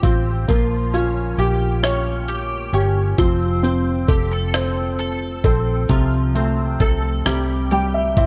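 Swaying in a slow six-eight lilt, this tender pop ballad is cut from a longer piece and runs just over eight seconds. A sampler-style drum kit sits up front with a gritty, pitched-up character, its thumpy kick joined by hi-hat and rim click. Alongside it, a vintage fingered electric bass gives a round, punchy, foam-muted low end, dark and amped. A baby grand piano carries the accompaniment with a natural tone and short sustain, adding a fill from 7.3 seconds to the end, while a twelve-string electric guitar plays clean, twangy arpeggios that shimmer through an ensemble chorus further back in the mix. The harmony moves from a Bbm6 through F and F/C to a closing C, all set in light digital ambience within a dark, warm production.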